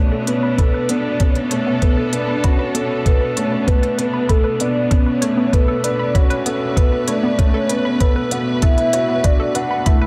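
This melancholic, cinematic piano and strings electronica piece opens at once with a velvety synth lead carrying the melody between A4 and F#5, coloured by chorus, tremolo and tape echo. It sits over rich, bowed string chords with vibrato and a soft attack, and a dark, mellow grand piano riff with long sustain and its own tape echo. Underneath, a round, detuned analog pluck plays arpeggios in the background; its bright sawtooth tone carries chorus, echo and sidechain pumping. An overdriven, high-passed electronic hi-hat enters at 0.3 seconds, followed at 0.6 seconds by a muffled, thumpy sampler-style kick that sits up front as the loudest part. Set at 97 BPM in 4/4 over a single Bm7 chord in B minor, this short build-up excerpt has a warm production with moderate scoring-stage reverb and a touch of small-room ambience.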